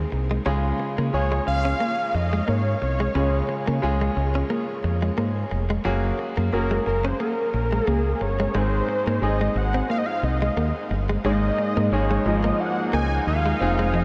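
A dreamy mix soaked in a vast ambient reverb frames this romantic, uplifting pop excerpt, which moves at an unhurried pace with a light swing. A brilliant concert grand piano plays up-front accompaniment with short sustain and deep low notes, washed in shimmer reverb. Beneath it, a dark, round fingered electric bass sits direct and close, while a clean, compressed electric guitar, recorded straight into the desk, picks a riff through subtle chorus, shimmer reverb and analog delay. From 1.1 seconds a thick, bold unison lead carries the melody, its detuned sawtooth and triangle tones backed by a sub octave, mellow yet sustained with vibrato and trailed by shimmer and analog delay. Near the end, at 11.7 seconds, a slow-attack sawtooth pad rises in the background with an evolving filter swell and chorus, adding a sustained glow as the harmony settles on a suspended chord.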